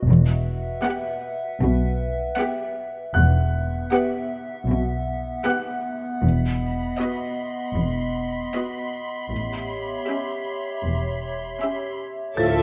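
A warbly, tape-like pad and a clear grand piano open this ominous, eerie stretch of suspense film score in a steady, straight 4/4. The pad holds lo-fi sustained chords through chorus and its own reverb, while the piano adds high texture with audible action noise and long sustain. Muted cello and double bass sections settle into a dark, bowed low end almost at once. A veiled con sordino violin section soon carries a narrow melody over an up-front viola section's accompaniment. At 6.2 seconds a second, more distant violin section adds soft high texture as the harmony moves from Emadd9 to B/E and then A7, all inside a light reverb. In the final moments, at 12.4 seconds, a warm French horn section and a punchy trombone section enter with sustained chords alongside another muted violin line, just before the excerpt is cut off.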